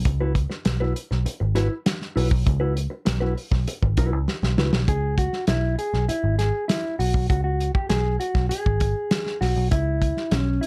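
Driving and sly, this short funk excerpt in C# minor moves at 99 BPM over a single C#m7 chord, with a round, foam-muted picked electric bass and a small-room soul drum kit with a tight kick and rolled-off top sitting up front, while a clean, compressed, fingered electric guitar first plays accompaniment and then, after a drum fill at 4.3 seconds, takes a solo from 4.9 seconds in a dark, dry production.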